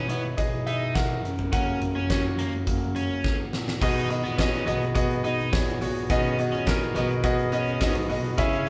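Recorded as a band playing together in one room, this piece has a moderate large-studio reverb that gives the ensemble a sense of space. It is hopeful piano-driven pop in B major at 105 BPM in a straight 4/4, cut from a longer piece. A clear, intimate concert grand piano sits up front with audible action noise and deep bass, carrying the accompaniment and taking a featured solo through the opening 3.8 seconds, over G#m/B and F# chords. Beneath it, a mellow bass clarinet in classical style plays the low line, while a biting overdriven electric guitar picks a compact riff. A huge arena drum kit with a fat snare, punchy kick and bright cymbals plays a fill at 3.2 seconds. At 3.8 seconds the harmony lands on B6 and a very quiet, grainy egg shaker joins in.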